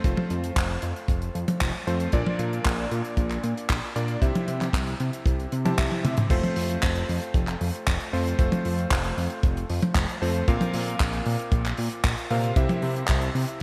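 A playful, danceable italo disco excerpt at 115 BPM in F major opens with a tight, dry kick, a fat detuned sawtooth analog bass and a bright, clangy electric grand piano playing stabs through digital delay, while an up-front funk kit with bright cymbals, handclaps, hi-hat and toms, all bathed in gated reverb, drives through F, Bb and C changes, a drum fill at 5.9 seconds leads into a second section that colors the harmony with Bbsus2, and the bright 1980s-style digital sound carries light reverb and a layer of vinyl crackle.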